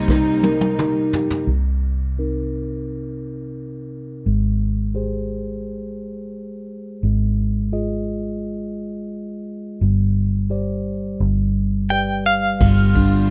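A melancholic, heartbroken folk-pop ballad in C minor at 86 BPM opens with a brief fill on a brushed drum kit with dark cymbals and a punchy kick. Meanwhile, a bright, twangy clean electric guitar sounds a short tremolo phrase over soft sul tasto chamber strings, a mellow tine electric piano and a round, foam-muted electric bass. After 1.5 seconds the strings and drums drop away, leaving the up-front electric piano and dark bass to carry the chords from Cm7 through Abmaj7 and Fm7/Ab to Gsus4 and G, before the guitar returns at 11.9 seconds and strings and brushes rejoin at 12.6 seconds on the closing G7, all in a close, dry and intimate sound.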